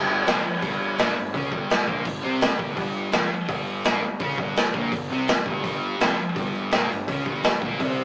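Rowdy and raw, this is a short cut from a longer garage rock piece, driving along at 167 BPM in a straight 4/4 around an Fsus24 chord. A thick, double-tracked fuzz guitar plays the picked riff up front, distorted and heavy in the low-to-mid register. Beneath it, a fingered electric bass with overdriven fuzz sits in the background, while a crunchy breakbeat drum kit enters at 0.3 seconds with hi-hat, a tight kick and a medium-tuned snare, its sound saturated and gritty with a rolled-off top and vintage sampler grit. A very quiet, jingly tambourine joins at 5.6 seconds. The whole thing has the rough feel of a rehearsal-room recording heard through a small speaker, with a touch of light reverb.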